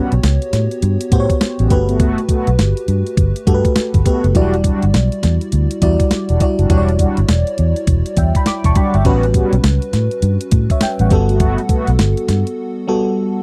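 A round, foam-muted fingered electric bass anchors this punchy, slick new jack swing excerpt, with a thumpy, tape-toned 8-bit drum machine up front, dreamy chorused FM electric piano over a soft pad, and dark, detuned synth brass stabs over swung sixteenths and lush ninth and thirteenth chords in a dry, close 1970s-style room, until the electric piano is heard alone from 12.6 seconds.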